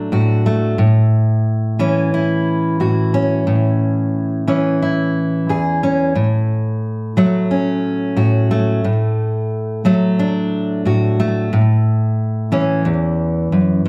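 A solo fingerpicked steel-string acoustic guitar sits up front in a moderately large studio room, its tone warm with an auditorium-like body, trailed by a slapback echo and a reverb that lingers around 1.2 seconds. This is a short folk passage cut from a longer piece, moving at 89 BPM in a straight 4/4 with a mood that feels both anthemic and nostalgic. The guitar carries the whole 13.9 seconds alone, ranging from E2 up to G#4. Its harmony circles over an A in the bass, passing from D/A to C#m/A, then A, F#m/A, and back through D/A and C#m/A. At 12.9 seconds the chords fall away to close the fragment.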